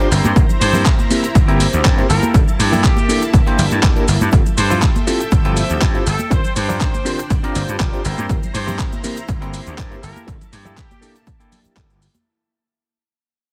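Swung sixteenths and a punchy, tape-flavoured electronic kick drive this groovy, nostalgic filtered disco house excerpt, where a gritty sampler-style kit of cabasa, handclaps and hi-hat, background egg shaker and hard-handed congas, an overdriven slap bass, a reedy electric piano through a phaser, a twangy clean electric guitar riff and a lush sawtooth string machine all pump against the kick beneath a tight, vibrato-tinged trumpet section melody with dub echo, the whole heavily compressed, radio-like mix fading out from 4.3 seconds.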